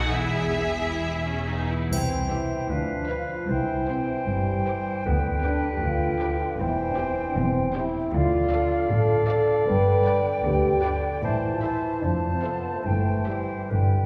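Lush string sections open this fast, dramatic yet graceful and lively romantic orchestral passage in C major at 132-159 BPM with a rubato feel: focused violins carry the melody over a soft-edged second violin line, intense violas, smooth cellos and even double basses. A tight French horn section enters with sustained chords at 1.5 s, and at 1.9 s a clear, close-miked clarinet, an airy, distant flute and a mellow, punchy bassoon add their lines while a triangle sounds briefly until 2.7 s, the sound set in a reverberant concert hall.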